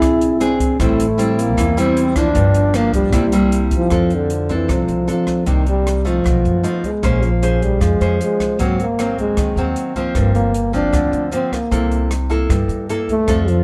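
A straight, easy bossa nova pulse in four runs through this relaxed, breezy fragment of a longer piece, carried by an airy, polished jazz kit playing hi-hat, rim click and a boomy kick, and by a woody pizzicato upright bass on steel strings. Up front, a mellow, breathy trombone takes the solo melody with jazz vibrato. Beside it, a bright, fingerpicked nylon-string guitar supplies classical-style accompaniment, its finger squeaks audible as it moves through colourful chords such as E7b13, Cm9, B7#11 and Ab9. A reedy, full-bodied FM lead with a soft attack, chorus and vibrato sustains a quiet second line in the background, but only until 3.7 s, just before the second section begins at 3.9 s. Light reverb and a dark, warm production give the small-room session a cosy, intimate sheen.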